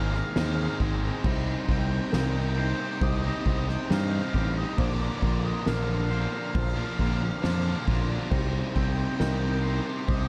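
Brooding and cinematic, this 10.3-second post-rock excerpt in C minor moves at a slow 68 BPM in straight 4/4, with a dark fuzzed lead guitar carrying the melody over an up-front, growling fingered bass and a soft-mallet drum kit with a fat snare and boomy kick that enters at 0.1 seconds. Behind them, an overdriven semi-hollow guitar and a tight, distorted guitar each play a riff, while a twangy clean electric guitar and a felt-muted upright piano with audible action noise trace arpeggios through analog delay. A very quiet brassy, detuned sawtooth pad with chorus and a filter sweep sustains chords through Abadd9, Cm and Bbadd9, all set in a dark, warm small-room ambience.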